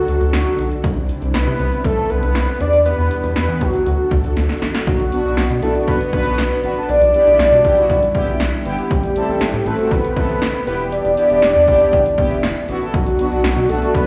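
A fat, nasal analog lead with slapback echo carries the wistful melody up front in this upbeat synth-pop excerpt at 119 BPM, over mellow string-machine cellos with ensemble chorus in the background, a rubbery, hollow square bass, a punchy, tape-warm analog drum machine with a fill at 4.4 seconds, and bold analog synth brass entering at 5.1 seconds, all heard through a big sound system in a bare stone room with light reverb.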